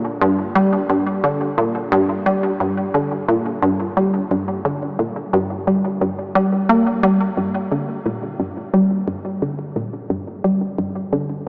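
A squelchy, detuned resonant blip pluck plays alone from 0.0 to 11.4 seconds in this hypnotic, mysterious ambient fragment in G minor at 88 BPM, tuned slightly flat to A4 = 437 Hz, its mellow, fast-attack filter plucks ranging from G2 to Bb3 and sitting up front with chorus and tape echo, all set in a huge wet reverb with a 7.9-second decay and a small-speaker sound.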